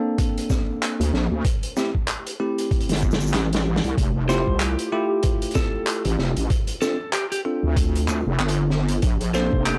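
A bell-like tine electric piano opens with clean stabs, pumping under sidechain and trailed by analog delay, before a gritty, thumpy electronic kick and a vintage kit of handclaps, hi-hat, shaker and snare enter at 0.2 seconds in this gritty, swaggering glitch hop at 95 BPM with a 16th-note swing in A phrygian. A heavy, saturated wobble bass with chorus lands up front at 1.0 seconds, and a drum fill runs from 2.7 to 4.0 seconds as the chords move from Bbmaj9 through Am7 to Fmaj9 and Dm7. At 4.3 seconds a slightly broken-up, picked lead guitar with analog delay takes the melody, all set in light reverb.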